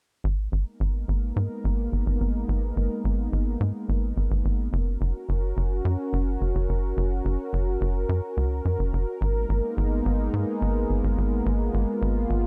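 Uplifting and nostalgic, this synthwave passage moves at a straight 107 BPM in 4/4, cut from a longer piece, with a tight, punchy sequencer bass driving along while a filter sweep colors its plucky sawtooth and square-wave tone. Above it, a warm, detuned analog pad with chorus sustains smooth, slightly nasal chords from 0.2 to 12.5 seconds, moving from G#madd9 to F# at 4.7 seconds and back at 9.2 seconds. Both parts sit up front in a light reverb.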